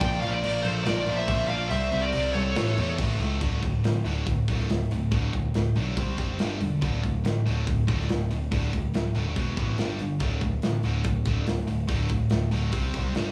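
Heavy metal in D minor at 142 BPM, relentless and heavy, opening in half time as two high-gain lead guitars, a bright one up front and a dark one behind, voice a melody and second line over the power-chord changes until 2.9 s, while an overdriven rhythm guitar in the background and a distorted high-gain guitar drive the riff alongside a growling, up-front picked bass and a tight, saturated drum kit of kick, snare, hi-hat and crash, all played together live in a small room with light reverb, in a passage cut from a longer piece.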